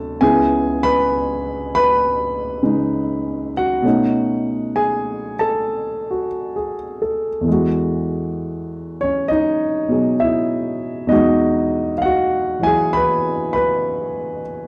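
A grand piano opens this short solo jazz excerpt, placed up front with an intimate, natural tone and the clatter of its action audible beneath the notes. The mood is sophisticated and relaxed, unhurried in 4/4 with a gentle swing on the eighth notes. The harmony moves from C#m7 at 0.2 seconds to B9 at 3.8 seconds, then settles on Emaj9 at 7.5 seconds, as the piano ranges from C#2 up to B5. A slapback echo on the piano adds a brief repeat to each sound. The recording has a dry, close 1970s studio character, touched by light reverb and the ambience of a small room.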